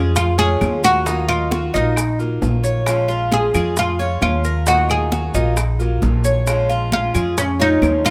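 Sultry and danceable, this short Cuban son and guajira cut moves at 133 BPM in Bb minor over Bbm7 and Ebmadd9, with a deep, fretless, plectrum-plucked oud carrying the melody up front beside a dark, woody pizzicato upright bass, while a metallic double-strung Cuban tres spins arpeggios and a bright, boxy fingerpicked archtop guitar fills in the accompaniment; thick-skinned congas and tight high-tuned bongos sit in the background from 0.2 seconds alongside close, grainy maracas, and vintage-sounding claves join at 0.6 seconds, all captured with close, detailed microphones and very little reverb.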